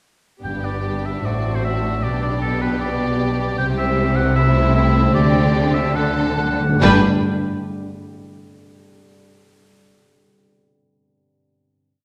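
A wet concert-hall reverb surrounds this short, complete orchestral piece, a dramatic yet graceful and lively fast romantic movement in G major, played in 4/4 with rubato at around 134-156 BPM. From 0.4 seconds a studio violin section carries the melody with light vibrato and tremolo, while a clear, punchy oboe adds a second line above it, joined by a lush symphonic violin section in the background on sustained chords. Violas fill in the accompaniment, and an expressive cello section and a rich, focused double bass section hold the bass together. A concert harp rings underneath with thumb-plucked broken chords. Timpani struck with hard mallets sound at the start and return with a fill from 6.0 seconds as the tempo slows, leading into the closing G major chord at 6.8 seconds.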